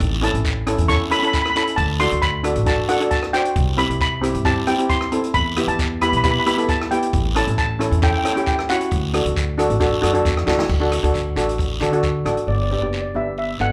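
A shimmering lead steel pan with hard rubber sticks opens this festive, carefree calypso, riding over woody pizzicato upright bass, a raspy close guiro and an open jazz kit with a boomy kick, dark cymbals and a rolled-off top. A second, up-front double-seconds pan joins at 0.2 seconds as accompaniment, and both pans and the guiro carry a slapback echo. The drums play a fill at 10.5 seconds and stop at 12.5 seconds as the chords move to Gmaj7, all heard as a live gig through the venue's PA with light club reverb, cut from a longer piece.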